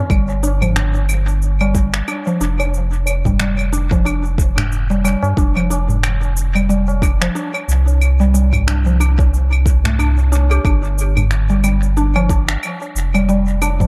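Hypnotic and mystical, this organic downtempo excerpt swings its sixteenths as woody, FM-tinged mallet-like synth plucks trace chorused, dub-echoed arpeggios over a round sine sub bass sitting up front, a deep, layered electronic kick, and electronic claves, cabasa and finger snaps trailing dub echo, while a low-tuned, ringing acoustic tabla joins at 0.4 s and the harmony shifts between G5 and F5 in an echo-heavy mix with light reverb.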